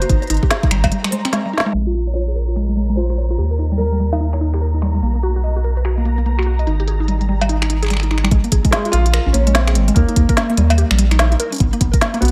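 Soft reverb and a low-passed digital ambience frame this glitchy, melancholic IDM excerpt, set at 146 BPM in Bb dorian with a swung sixteenth-note feel. A felt-muted upright piano carries an intimate, mellow melody through lush chorus and analog delay, pausing at 4.8 seconds and returning at 8.7. Beneath it, woody FM mallet plucks spin arpeggios with 12-bit sampler grit and a filter sweep, a round, dark analog bass sits up front, and a tape-toned organic electronic kit of snare, hi-hat, finger snaps, cowbell and crash cymbal is washed in diffuse ambient delay. A deep electronic kick punches briefly at the start until a break and drum fill, then returns from 8.3 seconds, while a bright, flickering granular texture pumps faintly in the background until that point.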